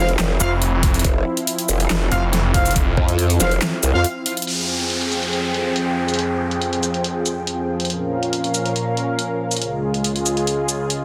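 Menacing and heavy, this half-time wobble dubstep excerpt at 140 BPM in F harmonic minor opens on a drop where an aggressive, formant-filtered growl bass with chorus and a snarling, detuned saw bass with a resonant moving notch meet gritty 12-bit warm brass stabs with dub echo and a knocking overdriven kick, while a dubstep kit with a huge snare and bright hats and a lush, sidechain-pumped supersaw pad carry on past a short break at 4.0 seconds, as an electronic downlifter enters at 4.5 seconds and the chords move from Fmadd9 through Bbm to Db.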